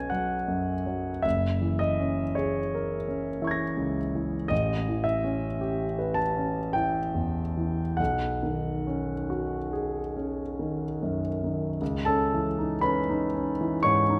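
An intimate concert grand piano, up front with deep bass, long sustain and audible action noise, carries this dreamy, luminous fragment of impressionist classical solo piano in B mixolydian, drifting in a rubato 3/4 at 45-61 BPM through rich chords such as Badd9, F#9, A9 and B69 before shifting to a new section on C#m9 at 11.8 seconds, all bathed in a moderate scoring-stage reverb.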